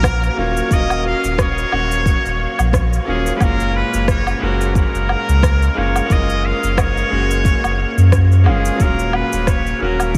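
A dreamy mix soaked in huge ambient reverb frames this wistful, smooth sunset chillout cut, moving at 89 BPM in Eb minor with a 16th-note swing and shifting between Ebm9 and Gbmaj9. A distant, nasal trumpet with a straight mute carries the melody with vibrato and delay over a bright baby grand piano with audible action noise and tape echo, while a round, sine-like sub bass sits up front. Layered electronic drums add a deep kick beneath a quieter rim click, woodblock and cabasa, all in studio reverb.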